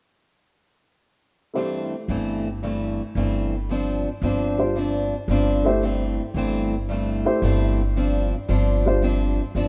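A dark, pizzicato upright bass sits up front from 2.1 seconds, holding low on G beneath a swinging, joyful jazz groove at 112 BPM in 4/4 and C major, tuned slightly flat to A4 = 436 Hz. A warm parlour steel-string acoustic guitar, picked with fresh strings and also placed up front, enters at 1.6 seconds, just after a woody, short-sustain upright piano that begins at 1.5 seconds, the two accompanying parts moving between C6/G and G7sus4 until the piano stops at 9.0 seconds. Light reverb and small-room ambience give this fragment of a longer piece the rough, natural feel of a home demo.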